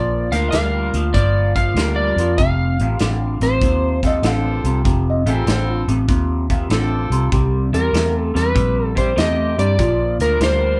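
A dark, slightly broken-up slide guitar played with fingerpicks opens this laid-back, gritty electric blues shuffle, over a lo-fi, compressed guitar riff with phaser and a round, foam-muted bass up front, joined almost at once by a small-room country drum kit with a punchy kick and stabs from a vintage saxophone section with light vibrato. When the slide pauses, a clear, woody upright piano carries a second line in the background from 4.1 to 6.9 seconds, and the slide returns at 7.7 seconds. The band sounds as if playing live together in one room with a wet ambience, in a snippet cut from a longer piece.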